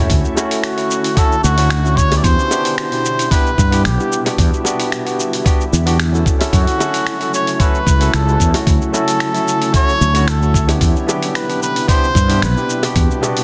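This blissful, smooth sunset chillout passage in D major opens with a bright, barky tine electric piano and a shimmering, ethereal ambient pad, both sounding from the very start. The electric piano carries delay, while the pad sits in the background with chorus and its own reverb. At 0.1 s a growly, up-front fretless bass arrives with a gritty sampler-style soul drum kit and a thumpy electronic kick, setting a straight 4/4 groove at 112 BPM. The kit brings cabasa, finger snaps and hi-hat, and soft clipping roughens its snare. Tight, high-tuned bongos join in the background, and at 0.6 s a cup-muted trumpet takes the melody with a veiled yet forceful pop-style tone, vibrato and delay. The chords move from Dmaj9 through Cmaj7/E, Em7 and F#m7 before returning, all under a moderate plate reverb and a dense, heavily limited modern master, in a passage cut from a longer piece.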